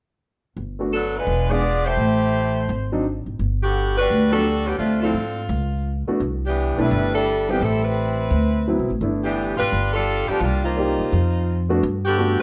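Swung eighths at 171 BPM in 4/4 drive this joyful big band excerpt in G major. A pizzicato upright bass with a woody, steel-string tone starts it at 0.6 s, sitting up front and anchoring the low end. A baby grand piano with a natural, short-sustained sound follows as accompaniment, and a dark, vintage-sounding saxophone section with light vibrato carries the melody as an up-front ensemble. After a brief opening passage, a longer second section begins at 3.4 s, moving through chords such as Cmaj13, D13 and G69 before stepping through Cm7 and F7 and landing back on Gmaj7. A moderate large-studio reverb gives the band a roomy feel, and the top end is rolled off above 7.9 kHz, lending the recording a mellow, old-fashioned glow.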